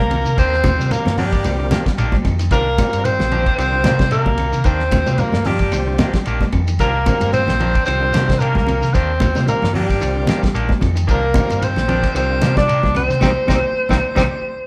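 In a roomy live studio sound, this funky, driving afrobeat fragment puts a warm alto saxophone melody up front over a raspy, gritty tenor saxophone second line, with a round fingered bass, a cloth-damped thuddy drum kit with a fat snare, ringing high-tuned congas, a grainy shekere, faint woody claves, a very quiet hollow-body guitar playing arpeggios, bright picked guitar stabs, and a lightly overdriven tonewheel organ with key click and slow rotary swirl entering at 0.6 seconds, before the band hits an accent at 13.2 seconds.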